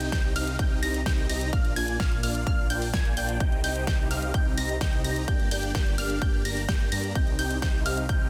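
Festival progressive house with a powerful, euphoric mood, this short cut from a longer piece moves through C minor, B-flat and G minor chords in a straight 4/4 groove, with a punchy electronic kick sitting up front from 0.1 seconds and a big-room kit adding hi-hat and a huge snare in a small room. Lush, phased supersaw chords carry the riff while a high, detuned unison pluck spins arpeggios with delay, both pumping against the kick alongside a thick, saturated detuned saw bass treated with chorus. The mix is dry, dense and heavily limited in a modern style.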